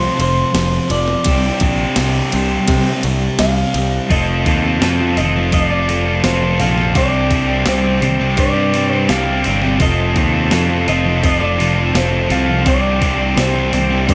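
A steady, straight 4/4 pulse at 84 BPM drives this blissful, hazy slice of shoegaze and dream pop, cut from a longer piece and set in F mixolydian as the harmony rocks between F and Csus2. A clean 12-bit drum machine enters at 0.2 seconds with a thumpy kick, medium-tuned snare, hi-hat and ride cymbal, its sampler-style hits re-recorded in a large room. Beneath it, a bright, direct picked bass anchors the low end, while a thick, dark fuzz guitar with distortion and subtle chorus grinds out a riff. Up front, an overdriven guitar with a warm tone plays a second riff bathed in reverse reverb. Above them, a twangy, slightly broken-up guitar through a small old amp carries the melody between C5 and F5, its picked notes trailed by slapback echo, all held in a light reverb.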